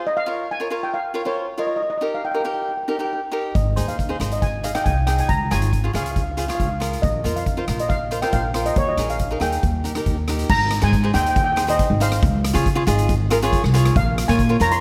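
A straight, bouncy 4/4 calypso groove carries this carefree piece, cut from a longer performance. A crisp, bright picked cavaquinho supports a shimmering, mellow lead steel pan played up front with soft rubber sticks, and at 3.6 seconds a woody, thumpy pizzicato upright bass and a polished street-band drum kit join in. The kit brings a boomy kick, rim clicks, hi-hat and dark crash cymbals in a big-room sound, while light reverb and a faint mains hum sit beneath the mix.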